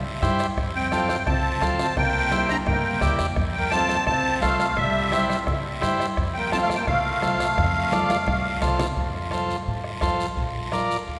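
A festive, joyful cumbia cut from a longer piece, where a shimmering musette accordion carries the melody above a distant, airy bass recorder second line until both stop at 8.6 seconds, backed by an up-front, buzzy vintage combo organ, woody pizzicato upright bass, a dry, raspy guiro, and ringing congas with a soft-beater bombo tucked in the background, the whole performance set in a long, wet cathedral reverb, as a drum fill from 7.9 seconds leads into a new section at 9.0 seconds.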